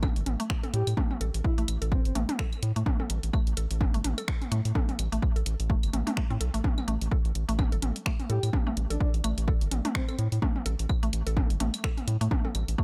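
Cool and sparse, this minimal techno excerpt moves at 127 BPM in A minor with a swung sixteenth feel, built on an up-front, punchy electronic kick and a round, deep analog bass that pumps under the sidechain. A woody, mallet-like FM pluck riff with chorus and dub echo sits over electronic toms and claves re-recorded in a small room, while a tape-toned analog drum machine adds finger snaps and hi-hat from 0.2 seconds. A breathy, flute-like synth lead with tremolo and vibrato drifts in briefly at 0.7 and again at 8.3 seconds, all set in a digital ambience.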